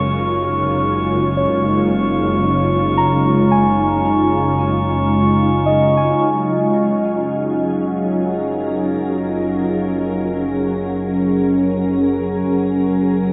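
A glassy, warbling FM pad sits up front in this luminous, serene ambient passage at 56 BPM in F# major, holding sustained chords through ensemble chorus while muted, felt-like synth keys trace soft arpeggios with chorus and tape echo above it. Beneath them a bowed double bass section with gut-string tone and light vibrato holds a low F#, while an organ-like drone and the pure, beating shimmer of a glass harmonica drop out around 6.2 to 6.3 seconds. The whole passage, cut from a longer piece, rests on a single F#maj9 chord and is bathed in a huge, wet reverb with an 8-second tail.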